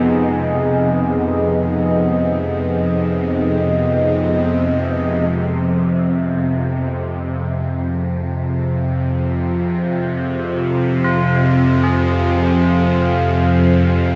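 Dark and desolate, this dark ambient drone unfolds in free time in F minor, an excerpt cut from a longer piece. A tense, string-like bowed drone sits up front in the low register, its detuned sawtooth grit colored by vibrato and a phaser. A deep, moody pad of chorused sawtooth and sine layers with a sub octave fades in from 5.3 seconds as the harmony moves from Abm to Fm, and solemn, metallic tubular bells struck with a rawhide hammer ring out in arpeggios from 11.0 seconds through diffuse delay, all held in a huge, long-tailed reverb with a muffled top end.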